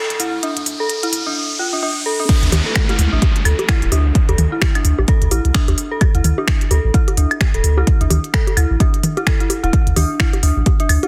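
A swung 4/4 groove at 129 BPM drives this cool, hypnotic minimal techno excerpt, opening with a short build-up where a clicky, overdriven drum kit of hi-hat, finger snaps and crash cymbal ticks over a deep, punchy sine sub bass with a pitch-drop attack. An eerie, inharmonic FM synth bell with a warbling, vintage character repeats a dark, detuned riff through chorus and dub echo, its tone shaped by a filter sweep while an electronic riser and downlifter add sound effects to the build. The drop lands at 2.3 seconds, when a deep, overdriven electronic kick drum arrives up front beside the bass, while the bass and the bell both pump with sidechain compression. From 2.5 seconds, tape-warm analog toms, bongos and claves join with tape echo, thickening the percussion. The mix sits in light digital ambience, with a dense, heavily limited, high-pass filtered modern master that keeps the focus on the mesmerising loop.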